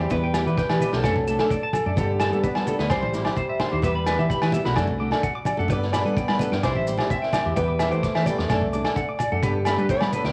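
Opening at once with a boxy, fingerpicked steel-string acoustic guitar carrying the tape-echoed melody over a flamenco guitar's accompaniment with fresh strings and finger squeak, twangy, slightly broken-up electric guitar arpeggios, a clear trombone second line with light vibrato and scooped notes, and a round, dark fingered electric bass, this carefree, danceable highlife excerpt at 129 BPM in G major cycles through Em, D, Gadd9 and C as a gritty, saturated vintage drum kit, bright hard-handed congas and grainy maracas join at 0.1 seconds, with ringing agogo bells arriving at 0.3 seconds, all captured as a home cassette recording in a moderate booth ambience.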